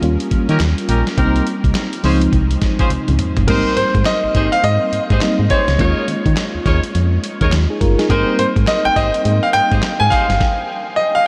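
Bouncy and slick, this new jack swing R&B excerpt at 104 BPM swings its 16ths over a gritty, compressed sampler-style drum kit with a thumpy kick, a punchy, round FM bass, a dark FM electric piano with tremolo and tight vintage horn stabs in a diffuse delay, until a drum fill brings in a bright, polished concert grand piano melody at 3.5 seconds, the whole dreamy mix soaked in huge reverb before a stop at 10.4 seconds.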